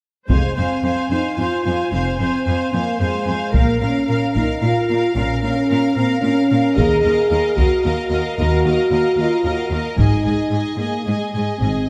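In a straight 3/4 at 111 BPM, this dark, relentless excerpt of epic orchestral film score drives hard-stick taiko drums, heard close, beneath distant, roomy French horn chords, while focused violins carry a vibrato melody over a smooth second violin line, lush violas, expressive cellos and clear double basses, moving through Fm, Bbm, Ebmadd9 and Ab in a moderate scoring-stage reverb.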